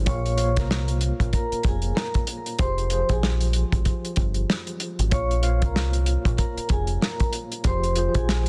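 Dark and reflective, this short boom-bap hip-hop excerpt sits at 95 BPM in 4/4 with a swung sixteenth feel, moving between Bbm and Fmadd9 in a small room. A soul drum kit with a tight kick, medium-tuned snare and hi-hat, dry and rolled-off on top, sits up front beside a deep, round picked electric bass, direct and amped, while a mellow, clean tine electric piano with fast tremolo through a combo amp fills in the accompaniment. Over them, a close-miked vibraphone played with medium mallets carries the melody, metallic and ringing with slow motor vibrato and digital delay, all within a dense, heavily limited modern master.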